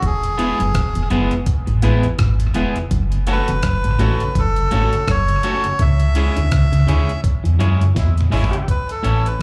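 Roots reggae at 83 BPM in 4/4 with a gentle sixteenth-note swing, laid-back and sunny, this is a short cut from a longer live gig heard through a club PA with light reverb. A reedy, breathy melodica carries the tune through dub and slapback echo, over a deep, round sub bass and a gritty, compressed sampler-style kit with a thumpy kick, both sitting up front. One slightly broken-up electric guitar plays a low, twangy riff, while a second, darker guitar adds accompaniment bathed in the same echoes. A brilliant, woody upright piano plays stabs with slapback, and a very quiet, flute-like tonewheel organ turns on a slow rotary speaker. The chords move from E to F#m to C#m, and from 5.8 seconds the band hits accents. A drum fill at 8.0 seconds coincides with a brief, distant horn section playing a second line before the progression arrives on A.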